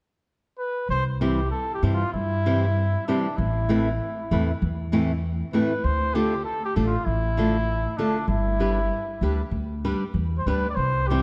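Romantic and festive, this short mariachi-flavored Mexican folk excerpt opens with a mellow solo trumpet carrying the melody from 0.6 seconds, its light vibrato giving it a classical, slightly distant character. A woody, thumpy upright bass played pizzicato on gut strings joins at 0.9 seconds, and a fingerpicked flamenco guitar with fresh strings follows at 1.2 seconds, all three sitting up front over a chord progression that moves from C through Amadd9 and Dm to G. The dark production places them in the moderate reverb of a concert hall.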